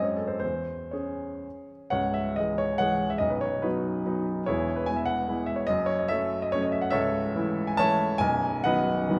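A clear baby grand piano plays alone throughout this brief passage, cut from a longer romantic classical piece, its polished, present tone sitting up front. The music is a triple-time dance in 3/4 with dotted rhythms, set in C# minor and moving with a free rubato that lets the tempo drift between 112 and 157 BPM. The mood is wistful and capricious, and the piano spans from the deep B0 up to A5. A short opening statement gives way at 1.9 seconds to a longer restatement of the same material, with harmony passing from C# minor through B, E and F# minor before settling on A over C# and then B. The recording places the instrument in a church or concert hall, where a wet reverb with a 1.7-second decay adds a resonant halo around every phrase.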